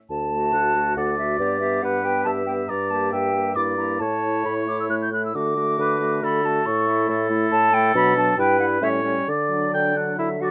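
A silver concert flute carries the melody with a pure, expressive tone, vibrato and a crisp attack, set at a distance, in this lively, cheerful classical-period movement for wind quintet in D major, in 3/4 at 138 BPM with a rubato feel. Beneath it a dark, smooth-topped bassoon holds the bass up front from 0.1 s, a warm, roomy oboe adds a second line from 0.5 s, and a bright clarinet and a clear, punchy French horn supply accompaniment in the background. Close, detailed microphones and light reverb frame this short passage cut from a longer piece, whose harmony moves from D through G and G minor to an A7 that resolves to D at 9.3 s.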